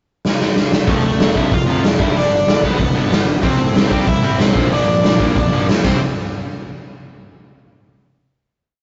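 Punk rock at 187 BPM in C major, this rebellious, rowdy piece opens with a drum fill on a raw garage kit that sits up front, with a punchy kick, medium-tuned snare, hi-hat and crash in a stone room with a rolled-off top. At 0.9 seconds a dark, high-gain lead guitar enters with a free distorted melody, partly doubled in octaves, over palm-muted eighth notes from a very quiet overdriven stack guitar and a tight distorted guitar in the background, plus driving fuzz bass, as the chords move through F, G, C and B-flat. Another drum fill at 5.8 seconds leads into a final hit, and the whole piece has a rough rehearsal-room sound with tube saturation.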